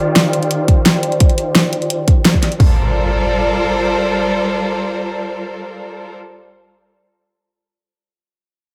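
A straight 4/4 liquid drum and bass groove at 172 BPM in G minor, melancholic and rolling, opens with a clear, focused studio string section holding sustained, bowed chords with vibrato, moving from Ebmaj9 to Gm11; it pumps against a sidechain and runs through a low-pass filter that sweeps during the opening bars. Two layered electronic pop drum kits then come in up front, the first at 0.2 seconds carrying hi-hat and a fat snare, the second at 0.7 seconds adding hi-hat, toms and a punchy kick, both with a small-room character. The drums drop out around 2.6 to 2.7 seconds as an electronic impact arrives and rings on beside the strings under light digital reverb in this fragment cut from a longer piece.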